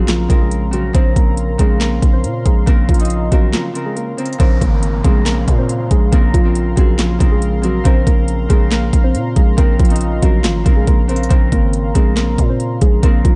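Menacing and hard-hitting, this half-time trap excerpt in Bb minor at 139 BPM sets muted, felt-like synth keys with chorus and delay carrying the melody over a ringing, fingerpicked Celtic harp and a deep, detuned analog pad, while a growling, buzzy 808-style bass and an overdriven, up-front trap kit of knocking kick, sharp snare, handclaps and crisp hats hit hard underneath, with a brief break at 3.5 seconds and a background downlifter sounding from 4.4 to 7.9 seconds, set within a dark digital ambience.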